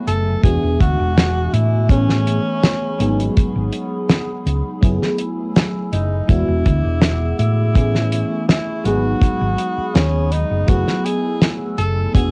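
A hazy, nostalgic vaporwave snippet opens on a lush, dreamy FM electric piano with a soft pad layer, treated with phaser, chorus and tape echo, over a warbling, lo-fi tape-like pad that sits dark in the background as the chords cycle through E9, Amaj9, G#m7 and F#m11. A breathy tenor saxophone carries the jazz-style melody with vibrato and scooped notes through cassette grit and tape echo, while a round, punchy hollow-body bass and a damped, dry 70s kit with a fat snare sit up front, joined by a tight kick at 0.4 seconds. It sounds like a home cassette recording with moderate booth ambience, with a faint mains hum underneath.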